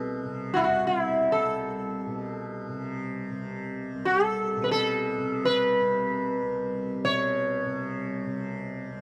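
A sitar and a tanpura sound together from the very start of this short Hindustani classical excerpt, set in raga Marwa on C and moving in free time. The mood is meditative and devotional. The plectrum-plucked sitar carries the melody between E4 and Db5, its round, buzzing tone ringing with sympathetic strings that lend a shimmering halo. Beneath it, the softly plucked tanpura holds a bright, buzzing drone from C2 to C3, sitting lower in level but still up front. The recording is dry and close, in a 1970s studio manner with little reverb, and the 9-second passage is cut from a longer performance.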